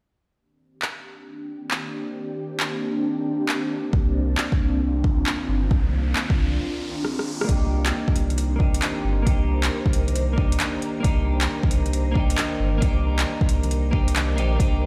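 An ethereal, airy pad carries this melancholic, wistful future garage passage, holding sustained chords on a Cm9 from 1.3 seconds under a filter sweep, its detuned sawtooth and triangle layers thickened with ensemble chorus, phaser and a noise layer, all pumping against the sidechain. Handclaps, rim clicks and metallic hats from an overdriven deep house kit set up a swung 16th-note feel at 135 BPM in C minor, and at 3.9 seconds a deep, layered kick and a round sine sub bass join, the bass also breathing with sidechain pumping. An electronic riser climbs into a short break and drum fill that close the first section. At 7.4 seconds a bright, twangy twelve-string electric guitar enters with clean picked accompaniment, roughened by vintage 12-bit sampler grit and shaped by a low-pass filter sweep, digital delay and sidechain pumping. Light digital ambience and stone room reverb give the mix the feel of a big sound system playing in a bare room, and the passage is cut from a longer piece.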